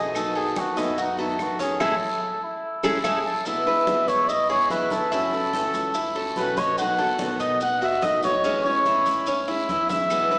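A cup-muted trumpet leads up front with a mellow, veiled tone and vibrato, playing a jazz-inflected solo over the opening 3.5 seconds, with the band adding an accent from 1.8 to 3.5 seconds. This sunny, relaxed Cuban son and guajira groove moves at 145 BPM in 4/4 in E major, cut from a longer piece and built on chords such as B7, Amaj7, E and F#m7. Beneath the trumpet, a Cuban tres spins metallic arpeggios on its doubled strings, while a picked steel-string acoustic guitar supplies warm accompaniment and a dark, thumpy pizzicato upright bass with gut strings sits in the background. The percussion gathers thick-skinned congas, raspy guiro and grainy, vintage-sounding maracas in the background, with very quiet woody claves heard up to 3.1 seconds and again briefly near the end. A wet, hall-like reverb gives the whole a roomy sheen, though the overall sound comes across as if through a small speaker.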